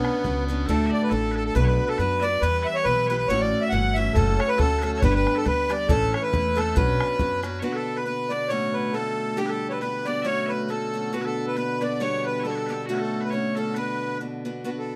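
Close, detailed microphones and light reverb frame this dark, wild and lively Celtic polka in B minor at 138 BPM, its 2/4 pulse carrying a light swing. A reedy, clear accordion leads up front, shadowed by piercing bagpipes on a softer second line, while a boxy picked archtop guitar picks out the chords and a woody, thumpy gut-string upright bass anchors the low end. A damped, tight bodhran sounds at the very start and returns from 4.2 to 7.5 seconds; at 7.6 seconds the bass drops away and a mellow, breathing pedal harmonium enters with a full, dry drone beneath the tune.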